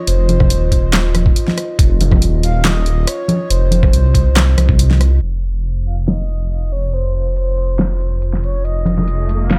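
Dark and cavernous, this deep dubstep excerpt moves at 140 BPM in a half-time feel, with a breathy, flute-like synth lead carrying the melody through analog chorus and dub echo over a moody, wave-folded pad, a rumbling detuned saw bass up front, a muffled, thumpy pitched-down kick that drops out at 4.8 s, an overdriven deep house kit with a fat snare, handclaps, hi-hat and rim click, soft-handed vintage congas, and a filter sweep from 5.2 s before an electronic riser enters at 9.1 s.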